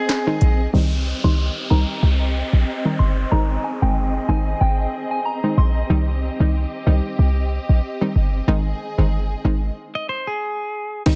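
A punchy, tight 808-style bass sits up front in this sunny, summery dancehall excerpt at 93 BPM in Ab major, running from 0.4 s to the end with a sine body, a noise layer and a fast, decaying attack. A round, full-bodied analog pluck with chorus and a low-pass filter carries the accompaniment, while a lush bowed string section holds sustained chords with vibrato until 9.8 s. A soft, pure FM synth bell adds a gentle melody between 1.2 and 5.7 s, coloured by chorus, phaser, a low-pass filter and tape echo, as an electronic downlifter drifts beneath. A bright, twangy clean electric guitar plays picked arpeggios in brief bursts, and an electronic afro-pop drum kit with a sharp snare, crisp hats, handclaps, rim clicks and a crash appears only in short hits at the opening and close. The chords move between Ab and Cm, a filter sweep runs through the main section, and a stop lands at 9.8 s, all in a digital ambience with a dense, heavily limited modern master.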